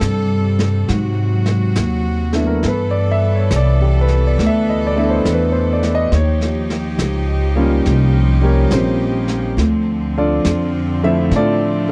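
Smoky and melancholic, this slow jazz ballad excerpt moves at 69 BPM in 4/4 with a swung eighth-note feel, drifting through chords from Am7 to G69, D#9 and Dm7. A close, earthy chamber cello section bows sustained chords with light vibrato over a woody, dark pizzicato upright bass and a muffled, lo-fi brush kit working the snare and hi-hat. At 2.3 seconds an intimate concert grand piano enters up front with audible action noise, all captured in a dry, close 1970s-style studio sound.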